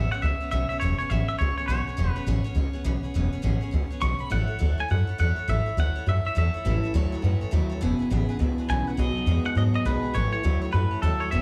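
A woody, thumpy pizzicato upright bass on gut strings sits up front beneath a clean, compressed, twangy electric guitar melody with analog delay and a bright, full-bodied picked dreadnought acoustic guitar, finger squeak and slapback echo included, and at 6.6 s a slightly broken-up electric guitar through a small old amp adds a low riff with analog chorus, all part of a rowdy, retro rockabilly cut in swung 4/4 at 206 BPM in E major that sounds like a live gig heard through the venue's PA with club reverb.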